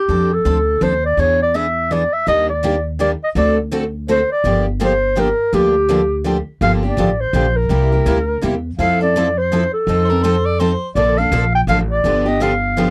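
A swung waltz pulse in three drives this fragment of acoustic string swing, brisk and virtuosic in spirit. A breathy clarinet carries the melody up front from the opening, its dark subtone, soft attack, scooped notes and vibrato giving the line a whispered, intimate jazz voice. Beneath it, an upright bass with gut strings sounds woody and thumpy, while a full-bodied steel-string acoustic guitar is picked as accompaniment. At 2.3 seconds, a second, brighter picked guitar joins in the background. A clear soprano saxophone adds a brief, punchy second line between 10.0 and 10.9 seconds, forceful with light vibrato. The harmony moves through a chain of sixth, seventh and major-seventh chords, captured in a close, dry studio sound in the manner of the 1970s.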